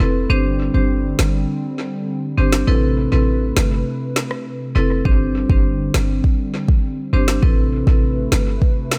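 Dancehall at 101 BPM with a sultry, hypnotic mood: a boxy, hard-mallet marimba and a hollow, flute-like pad with chorus both pump under sidechain above a punchy, tight 808-style bass, cycling between Gsus4 and Amadd9, while an electronic afro-pop kit with a deep kick, woody snare, rim click and analog delay enters at 1.2 seconds, during a break that runs to 5.1 seconds, all set in an echo-heavy mix with light reverb.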